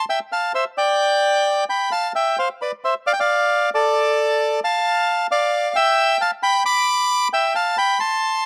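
This tango fragment, cut from a longer piece, carries a sultry, melancholic mood and moves with a free, rubato feel in 4/4. A lone bandoneon plays throughout the 8.5 seconds, its reedy, dark tone sitting up front. The line stays between A4 and D6, and its smooth voice gives the brief passage an intimate, brooding character. The harmony moves from C through G5, F5 and Dm, then back through G5 and G before coming home to C at 7.3 seconds. Captured outdoors with little reverb, the sound is dry and close, with nothing but the instrument itself.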